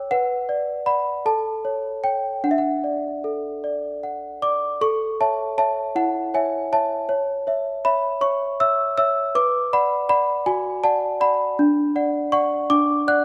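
Classical lullaby for solo celesta, tender and dreamy, moving in a gentle 6/8 with a freely breathing rubato. The celesta sits up front, its bell-like, delicate tone struck with hard felt hammers that give each note a sweet, bright edge, ranging from D4 up to F#6. The opening passage settles on B minor, A and D before the music shifts toward A major at 4.8 seconds, where a second section unfolds through A, A/C#, B minor and B minor over D. A light reverb surrounds the instrument, while the overall production is dark and warm, with a faint mains hum beneath. The recording is cut from a longer piece, ending at 13.2 seconds.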